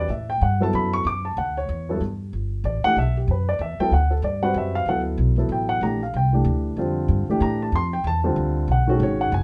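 A close, intimate club sound with a moderate reverb frames this short cut from a longer modal jazz piece in a swung three-four lilt, spiritual and searching in mood. A dark, mellow baby grand sits up front playing accompaniment, its short sustain and audible action noise giving it a natural, touchable presence. A woody, pizzicato upright bass with steel strings anchors the low end beneath major-ninth chords that drift from Dmaj9 through Gmaj9 to Bbmaj9 before landing on B at 8.7 seconds.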